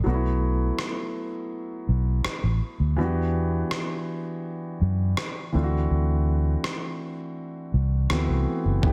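Contemporary R&B with a late-night, sensual mood, this excerpt opens on a dark, mellow concert grand piano with deep bass, soon joined at 0.1 s by a round, punchy, foam-muted electric bass through an amp, moving from B7sus4 to Em7, then D7 and D13. At 0.8 s a gritty, compressed sampler-style drum kit enters with a thumpy kick and rim click, re-recorded in a large room, with soft clipping on the snare. Piano, bass and drums all sit up front in digital ambience, under a dense, heavily limited modern master.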